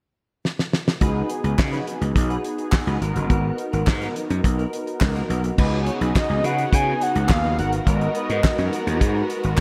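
A growly, overdriven slap bass sits up front with a damped 70s drum kit in this slick, funky early-eighties boogie funk excerpt at 105 BPM, the drums entering at 0.5 seconds with a fill before the groove settles into a tight kick, fat snare, dark cymbals and handclaps. Round, detuned synth brass with chorus and phaser accompanies the groove, while a clean picked electric guitar riff and crisp group handclaps sit in the background over alternating C#9sus4 and G#m9 chords. A smooth bowed string section arrives at 5.6 seconds, and at 6.2 seconds a fat, nasal analog lead with chorus, delay and vibrato carries a brief melody through a dreamy mix soaked in lush hall reverb.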